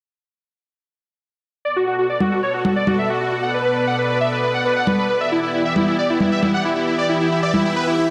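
Uplifting trance in B minor at 135 BPM, this short cut from a longer piece carries a bittersweet yet euphoric mood in a straight 4/4. A huge, detuned supersaw carries the melody from 1.6 to 8.1 seconds, its fast-attack sawtooth chords sitting up front through a low-pass filter and digital delay, with a filter sweep running across the same span. Beneath it, a lush supersaw pad holds sustained chords, blending a slow attack with a triangle layer and a sub octave that give it a warm body. Layered electronic congas enter at 2.2 seconds and drop out at 7.6, adding a produced percussive lift. The harmony moves from Bm7 to Em7 at 5.2 seconds, all set in a moderate digital room reverb.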